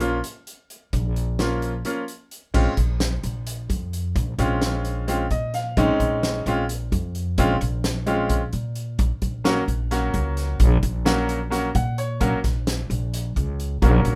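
Progressive instrumental band music in a brooding, tense Bb minor, moving in 7/8 at 261 BPM counted in eighths, where a bright grand piano with short sustain carries the chords from Bbm through Bbm9 to Gb/Bb and adds fills around 5.1 and 11.5 seconds, over a woody, thumpy pizzicato upright bass on gut strings and a loose indie drum kit with dark cymbals, fat snare and punchy kick in a pumping studio room, all three up front under light reverb in this short cut from a longer piece.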